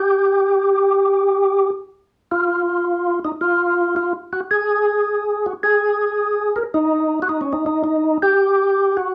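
Jazz with a soulful, swinging feel, this brief excerpt features a percussive tonewheel organ playing solo from start to finish at 9.1 seconds, staying in a compact middle range. Its fat, lightly overdriven tone carries audible key click and second harmonic percussion, colored by chorus vibrato and a slow rotary speaker, and it sits up front in the mix. A short, wet studio reverb places the listener further back in the room, lending the lone organ a sense of space.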